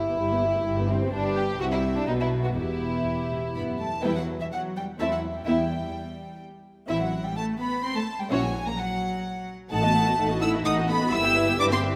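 A close, up-front section of violins carries the melody of this quick classical-period movement for string orchestra, its tone pure and floating with a soft attack, played sul tasto. Set in E minor at 127 BPM in a straight 3/4, the roughly twelve-second cut from a longer piece feels urgent and dramatic. A second violin section shares the front with a smooth-topped second line, while a dark viola section fills in the accompaniment beneath. Cellos, rich but more distant, and double basses reaching down to E1 supply the bass, with all parts sounding together from 0.0 s and the phrase moving from its opening material into a new section at 4.0 s. The harmony circles E minor before pushing through Am, F#7/A# and B7/A toward a return to Em/G at 11.1 s, all bathed in a wet scoring-stage reverb.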